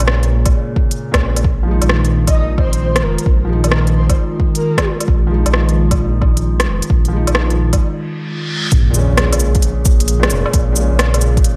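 A lo-fi, nostalgic haze hangs over this melancholic, rainy future garage excerpt in Bb minor at 132 BPM, swung on the 16ths. A warbling tape-like pad with chorus and built-in reverb and a soft, boxy felt-muted upright piano with audible action noise and delay both pump against the sidechain over Bbm7 and Fm7, above an up-front, rumbling detuned saw bass with tube saturation, an overdriven organic electronic kit of cabasa, smooth hi-hat, rim click and woodblock, and a deep, overdriven electronic kick that joins almost at once. A breathy flute-like synth lead with vibrato and ensemble chorus sings briefly from 2.3 to 4.9 seconds, and after a short break a reverse cymbal and sub drop carry into an impact at 8.7 seconds as Bbm7 returns.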